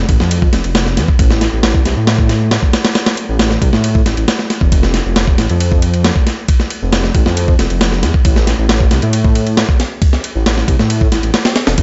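A straight 4/4 breakbeat groove at 136 BPM drives this swaggering, funky excerpt, cut from a longer piece, built on a dusty, sampler-style drum kit with a thumpy kick, medium-tuned snare and ride cymbal that sounds gritty and compressed, as if re-recorded in a large room. Beneath it, a dark detuned saw bass rumbles deep and beating from 0.0 seconds, ranging from E1 to A2 with a fast attack and sustained, mellow tone. Both parts sit up front in a dry mix whose top end is rolled off.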